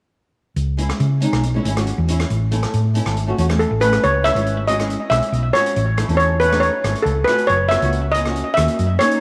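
A round, hollow-body electric bass and a street-band drum kit of hi-hat and rim click with a rolled-off top open this tense, intense calypso excerpt at 0.6 s, moving at 139 BPM in C# minor. A dark, fingerpicked flamenco guitar, double-tracked, joins at 0.8 s. At 3.6 s a shimmering steel pan, struck with hard rubber sticks and carried on tape echo, takes the melody up front and carries on as the chords move from C#madd9 through A to F#, all set in a moderate echo chamber.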